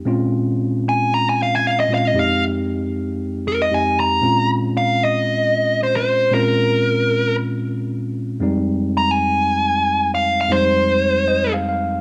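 Smoky, mournful blues in F minor at 115 BPM, this excerpt from a longer piece sets a dark, smooth, overdriven lead guitar soloing up front from 0.9 s over a clean tine electric piano, heard through its built-in speakers, that comps on Bbm9 and Fm9 and adds a fill at 11.0 s, all wrapped in light digital reverb.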